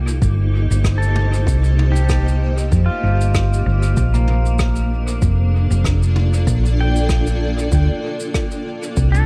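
A 96 BPM groove with a gentle 16th-note swing sits under this hazy, spacious ambient dub excerpt: a deep, tape-toned electronic kick stays in the background, while a jazz brush kit adds rim clicks, shaker and toms soaked in dub echo. Up front, a dark, round hollow-body electric bass anchors the move from Cm7 to Bbmaj7 at 4.0 seconds, beneath a blurred, detuned granular pad that drifts in cloudy, slowly evolving sustained chords. From 1.0 seconds, a bright, twangy pedal steel guitar plays clean, compressed slide arpeggios roughened by 12-bit sampler grit and analog delay, all set in an echo-heavy small-room ambience.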